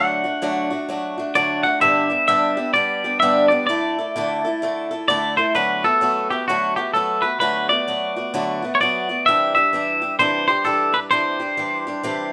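A twangy, compressed electric guitar carries the melody up front over a woody, boxy acoustic guitar picking a swing accompaniment, both sounding together from the first second of this nostalgic, heartfelt country piece at 129 BPM in D mixolydian. The clean, picked lead rings bright against the old-stringed acoustic as the harmony moves from D through G and Dsus2, then shifts at 5.6 seconds to D6 and later Cadd9. A moderate studio ambience surrounds the pair in this short cut from a longer piece.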